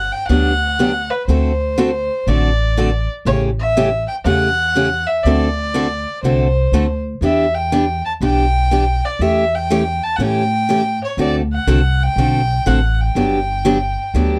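A bowed violin carries the melody in this lively, swinging jazz manouche excerpt, its nasal, earthy tone touched with light vibrato as it moves between B4 and A5. An upright bass plays pizzicato underneath from the first moment, woody and warm, sitting in the low register between G1 and A2. A picked steel-string acoustic guitar joins at 0.3 s with bright, parlour-sized accompaniment, and the occasional finger squeak is audible. The tempo sits at 121 BPM in 4/4 with a swing feel on the eighth notes, and the harmony moves from Gmaj7 through D7, A7, Em7 and A7/E before returning to Gmaj7. All three players sound up front in a dry, close 1970s-style studio recording with little reverb, and the piece is cut at 14.4 s from a longer performance.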